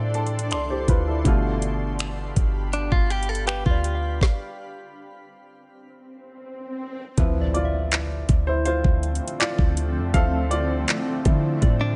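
Contemporary R&B at 81 BPM in D dorian, this late-night, longing piece opens with an intimate baby grand piano fill over a knocking, up-front electronic drum kit of finger snaps, handclaps, woody snare and metallic hats. Beneath sit a deep, boomy 808-style sine bass, a cloudy granular pad pumping inside its own reverb, and a soft FM bell with chorus and delay in the background. A clean, direct-recorded electric guitar adds brief picked arpeggios with delay over the G7 before a stop at 4.2 s. An electronic swell then leads into an impact at 7.2 s, where the piano, with its audible action noise, takes a solo over Dm7.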